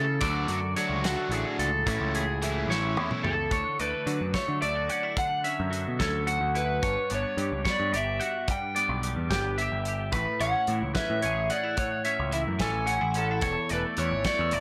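In a lilting 6/8, this wistful, intricate math rock and midwest emo passage opens with a double-tracked overdriven guitar riff, a bright, compressed twelve-string electric guitar coated in ensemble chorus, and a twangy, slightly broken-up guitar picking arpeggios through spring reverb and analog delay, over a growling, up-front overdriven bass, joined at 0.2 seconds by a loose, small-room indie drum kit with a tight kick and rolled-off top. A drum fill at 2.7 seconds leads into the second section, as the riff gives way at 3.3 seconds to a phaser-tinged overdriven semi-hollow guitar carrying the melody. The harmony moves through Dmaj7, A6, Dmaj9, Gmaj7 and Amaj7 before reaching E7sus4, all within a light room reverb.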